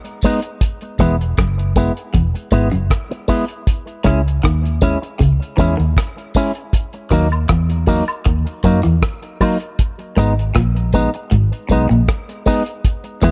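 A cloth-damped drum kit opens this serious, hypnotic roots reggae excerpt at 78 BPM in G# minor, its thuddy, dark kick, hi-hat and rim click sitting dry and up front. At 0.2 s it is joined by a clean, compressed electric guitar pushed through an envelope filter, and by a close tambourine and woodblock set low in the mix. At 1.0 s a round, punchy, foam-muted fingered bass arrives alongside a twangy, slightly broken-up second guitar playing a low riff through a phaser in the background, as the chords move from G#m through E, C#m and D#m back to G#m within a studio ambience.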